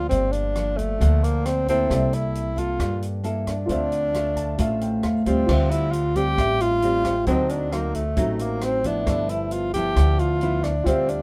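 Melancholic and smooth, this bossa nova excerpt in D minor moves at 134 BPM in straight 4/4, led by an up-front tenor saxophone playing a mellow, breathy subtone melody with light vibrato and scooped notes. Fingerpicked nylon-string guitar with audible finger squeak and a woody pizzicato upright bass carry chords such as Gm7, C13 and D7b9, while an open jazz drum kit adds dark cymbals, hi-hat, rim click and a boomy kick in a small, natural room. A warm baby grand piano with short sustain sits in the background and adds a fill from 4.1 to 5.5 seconds, and the recording carries light reverb.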